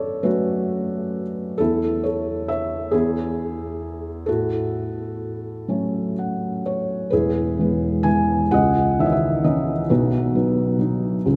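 Bathed in a long cathedral reverb, this short, calm and peaceful portion of a lyrical classical solo features a felt-muted upright piano, dark, intimate and up front with a thick-felt softness, moving freely in a rubato 6/8 lilt, adding a brief fill at 5.7 s and settling into a new section at 7.1 s.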